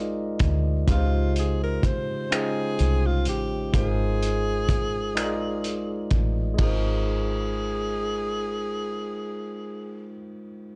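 A barky tine electric piano with plate reverb and a deep, round, foam-muted dub bass open this sensual slow six-eight R&B fragment in Ab major at 42 BPM, joined at 0.4 s by a cloth-damped, thuddy, lo-fi drum kit of finger snaps, hi-hat, tight kick and dark ride cymbal, before a breathy tenor saxophone enters at 0.9 s with vibrato, plate reverb and scooped jazz-style notes over Ab69 and Dbmaj9#11 chords, in a dark, warm production.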